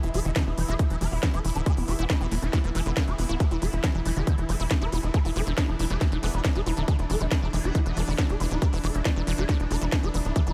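A swarming, detuned rave lead, a bubbling stepped-filter texture, a squelchy acid bass with phaser, a punchy nasal sequencer bass and a techno kit with cracking snare and smooth hats open this intense, hypnotic psychedelic trance excerpt, joined at 0.4 seconds by an overdriven, up-front kick, while a very quiet metallic wobble bass surfaces briefly from 6.2 to 8.0 seconds, with sidechain pumping on the lead, texture and acid line under light reverb.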